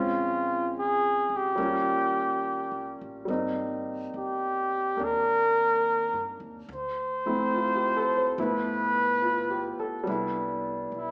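Jazz ballad at 71 BPM in swung 4/4, tuned to A4 = 435 Hz, tender and intimate, with an up-front flugelhorn carrying the solo melody with light vibrato and scooped notes over smooth, vintage grand piano chords moving from Bbm7 through Eb9 and Abmaj9 to Dm9, G13 and Cmaj9, while a woody, thumpy pizzicato upright bass sits dark in the background, the trio playing live together in one room, bathed in wet large-studio reverb with a small-speaker sound, in an 11.1-second excerpt cut from a longer piece.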